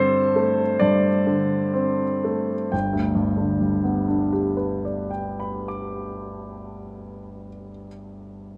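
Romantic classical character piece for solo piano in G major, lyrical and passionate, moving with a free rubato feel at 57-70 BPM in 4/4, where a clear, natural, up-front grand piano spanning G1 to D6 slows down over the opening 2.7 seconds on a D5/G chord before settling onto G, bathed in a wet recital hall reverb as a brief fragment cut from a longer work.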